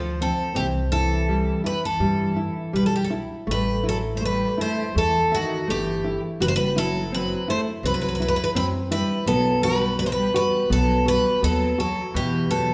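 A fado-style ballad at 83 BPM in 4/4, mournful and passionate, moving with a rubato feel through a short passage cut from a longer piece. A bright, shimmering picked twelve-string acoustic guitar sits up front with the octave-doubled melody from 0.2 seconds, while a dark, deep classical nylon-string guitar fingerpicks the accompaniment and a woody upright bass plays pizzicato beneath. A distant, bowed cello adds a dark second line with vibrato, all set in a wet recital hall reverb, as the harmony drifts from F through C6 and Am69/F# toward a close on Em.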